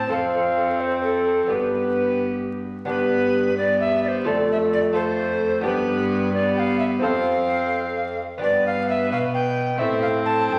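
Stately and festive, this brief cut from a longer Renaissance-style consort dance moves at 87 BPM in a straight 6/8 in G mixolydian, its harmony rocking between F and G before arriving on Am at 9.8 seconds. Two tenor recorders carry the melody and a second line throughout, one airy and up front with a crisp, chiffy attack and vibrato, the other mellower and more expressive. Beneath them, a delicate fingerpicked lute with double gut strings and a single bowed viola with gut-string tone provide accompaniment, and a rich, nasal cello sits distant on the bass, all set in a wet recital hall reverb with vinyl crackle.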